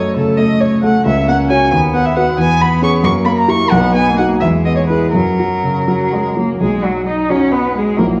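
Graceful and lively, this short excerpt cut from a longer piece is a quick classical-period movement for piano trio in B major, moving in a rubato 6/8 at about 81-91 dotted-quarter beats per minute. A violin carries the melody between F#4 and C#6, its tone rich, smooth and even with vibrato, sitting up front yet with a distant quality. Beneath it, a single bowed cello plays a focused second line between F#3 and D#4, also with vibrato. The concert grand piano accompanies from A#1 to C#5 and is the loudest of the three, with deep bass and short sustain. The harmony passes through F#m, C#m7/E and a tense F#7b9 before settling on B, and a second section begins at 6.6 seconds. The whole recording sits in a wet scoring-stage reverb and carries the worn, warbling pitch drift of old cassette tape.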